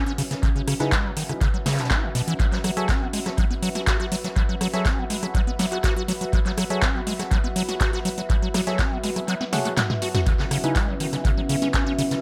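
Acid house at 122 BPM in a straight 4/4, this trippy, driving cut from a longer piece rides a C#m7 to F#m7 progression that returns to C#m7 at the close. A squelchy, hollow square-wave acid bass riff sits up front with resonant filter-sweep character, tube saturation, analog delay and sidechain pumping, under a deep, moody ambient pad of unison sawtooth and sine with a sub octave, chorus and its own reverb. The deep, tape-warm electronic kick drives the groove, joined by an electro analog drum machine with a punchy snare, metallic hats, handclaps, rim clicks and toms in a short room with tape echo, while a very quiet, distant brush kit adds hi-hat and snare from a small room. In the background, percussive organ-like stabs of sine and triangle with a noise layer drift through lush chorus and tape echo. The kick drops out at 9.3 s, a drum fill follows from 9.5 s, and a detuned sawtooth analog pad with slow attack and sidechain pumping enters at 10.3 s, all set in an echo-heavy mix with light digital ambience.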